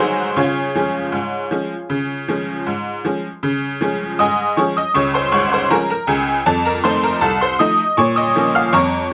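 A tack piano opens this short ragtime fragment on its own, its metallic, jangly tone sitting up front and giving the music a playful, lively, vintage character. The piece moves at 79 BPM in a straight 2/4 in Db major, with the piano covering a span from Ab1 up to F6 and tuned to A4 = 439 Hz. A brief opening phrase runs to about 3.4 seconds before the same material returns for the rest of the clip. The harmony rests on Db, then shifts to F7 at 6.5 seconds and to Bbm at 8.0 seconds, just before the fragment cuts off at 9.1 seconds. Close, detailed miking captures every percussive strike, while a light reverb adds a touch of space around the instrument.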